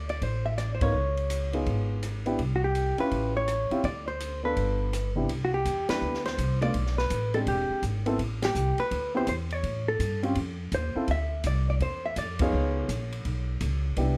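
A dark, clean hollow-body electric guitar carries the melody up front, its picked, compressed lines giving this swinging, playful small-group jazz fragment its voice. Close beside it, an upright bass plays pizzicato on steel strings with a woody, thumpy tone. An acoustic drum kit sits lower in the mix, recorded in a small room, with hi-hat, ride, rim clicks, snare and kick, its cymbals dark, the snare tuned high and the kick boomy. A baby grand piano enters at 0.8 seconds with intimate, natural-sounding accompaniment, its notes short in sustain and its action noise audible. The group plays two passes through the same section, the second beginning at 5.3 seconds, moving through extended and altered chords and striking shared band accents along the way, all under a light reverb.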